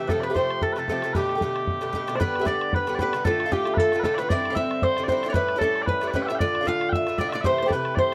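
Sweet, mellow small bagpipes carry the melody with vibrato, up front and sustained, while a dark, clean, compressed hollow-body electric archtop guitar picks a second line and a metallic, double-strung Irish bouzouki picks the accompaniment. A tight, damped bodhran joins at 0.1 seconds, giving this short, lively, bright Celtic reel its swung 4/4 drive. Close, detailed miking and light reverb keep the sound intimate through the chords, from Fadd9 and Gadd9 to a closing Am7.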